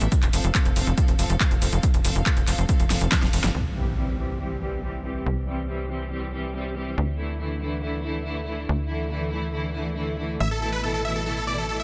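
Uplifting trance with a bittersweet, driving mood, this short cut opens on a lush, vibrato-rich string section holding sustained chords over a tight, nasal sequencer bass, both pumping against a punchy analog kick and an overdriven big-room kit with a huge snare, handclaps, hi-hat and shaker. The drums drop out after a fill near 3.5 seconds, where a background impact hits and a filter sweep begins on the strings. A huge, euphoric detuned supersaw lead arrives up front at 10.4 seconds with delay, all in a dry mix with little reverb.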